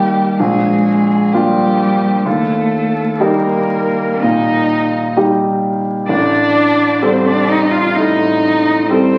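Classical chamber music in a slow, romantic piano-trio movement, this 9.2-second fragment cut from a longer piece feels melancholic and solemn, its 4/4 pulse bending with rubato. A single bowed violin carries the melody between G4 and F5 with a rich, expressive tone, vibrato and portamento, though it sits distant in the balance. Close and up front, one cello plays a second line from G3 to F4, its warm tone, soft attack, vibrato and gliding portamento lending it an expressive voice. The grand piano supplies accompaniment from A1 to A4 with a warm, intimate sound, long sustain and audible action noise. The harmony moves through Bb7, Eb and Am7b5, all bathed in the reverb of a recital hall and heard through the crackle of a very old 78 rpm record.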